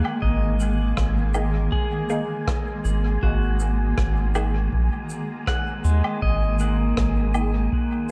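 A round, deep analog bass sits up front in this hazy, spacious ambient dub piece at 80 BPM in straight 4/4, holding a dark, nasal tone with a fast attack under a sustained G#sus2 chord, tuned to A4 = 442 Hz. Above it, a bright, twangy electric pedal steel guitar plays clean arpeggios with fingerpicks, slide and volume swells, its compressed sound trailing into dub echo. A cloudy, evolving granular pad drifts beneath in blurred, detuned unison, and an airy, breathy, wind-like noise layer hangs high on G#5, both bathed in their own reverb. A dry electronic kick enters at 0.2 seconds, while woodblock, shaker and rim click ring with big-room acoustics and dub echo. From 1.3 seconds, a muted, filter-plucked sawtooth chord stab sits in the background, colored by phaser, analog chorus, cassette tape and dub echo. The whole passage, cut from a longer piece, is set in light reverb and a small room ambience.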